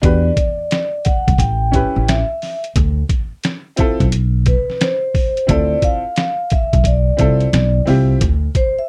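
Jazz-hop at 88 BPM with a 16th-note swing, this nocturnal, smoky excerpt in D dorian sets ringing, soft-mallet vibraphone with slow motor vibrato up front over a clear, boxy upright piano, a woody pizzicato upright bass and a muffled, pitched-down sampler-style kit with a thumpy kick, moving through Em9, A7 and Dm7 before a D7(no3) at 8.2 seconds, all caught in a dry, close 1970s-style studio sound.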